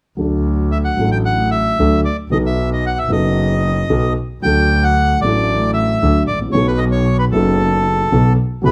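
A dark, mellow concert grand piano and a single bowed double bass open this playful, passionate tango together at 0.2 seconds, the piano's deep bass smooth and vintage in colour with a short sustain. The bass sounds clear and focused, its bowed line carrying vibrato in the low register beneath the piano's accompaniment. At 0.7 seconds a reedy bandoneon steps up front with the melody, its tone carrying the boxy character of a small room. The music moves at 114 BPM in 4/4 with a rubato feel, swaying between D major and B7 harmonies, and a second phrase begins at 4.4 seconds over the same chords. Close, detailed microphones and light reverb give the trio an intimate presence in this short excerpt cut from a longer piece.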